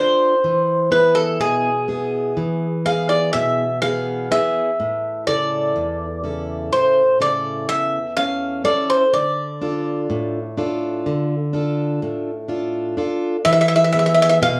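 Wistful and melancholic, this Greek folk piece for a bouzouki band moves in an odd 9/8 metre at 124 BPM counted in eighths, with a straight feel and a modal colour in D dorian with a raised fourth. The Greek bouzouki carries the melody from start to finish, its doubled strings giving a warm, metallic edge with some strings doubled at the octave, and it sits up front in the mix. Underneath, a picked, plugged-in steel-string acoustic guitar supplies the accompaniment, placed up front yet slightly lower than the bouzouki, with a concert body and the occasional finger squeak audible. The harmony moves from E to A to D minor before returning to E at 13.5 seconds, where a new section begins just before the recording breaks off at 14.6 seconds. A moderate studio reverb gives both instruments a modest sense of room. Because it is cut from a longer piece, it feels like a brief window into an unfolding tune.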